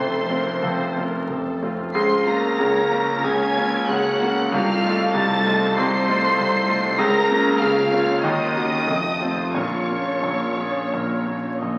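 Heard through the crackle of a very old 78 rpm record and the wet reverb of a recital hall, this short cut from a longer classical piece in Bb minor sounds tragic and passionate, moving at 95 BPM in 4/4 with uneven, rubato beats. A clear, intimate grand piano carries the melody up front, its action noise audible and its notes ringing with long sustain, while a lush, bowed violin section also carries the melody high above with soft-attacked vibrato. Beneath them, a pure, hollow silver flute and a distant second violin section trace a second line in the background, joined at 0.6 seconds by a very quiet bright clarinet and a smooth cor anglais, as a roomy bassoon and a portamento-inflected viola section fill in the accompaniment. A tight French horn section holds mellow sustained chords, and the bass rests on a focused cello section, a light-vibrato tuba and a very quiet double bass section. 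Hard-malleted timpani, close and dry but barely audible, strike only at the very start and again around 9.5 seconds, as the harmony moves through Ebm7 and F7 to settle on Bb minor.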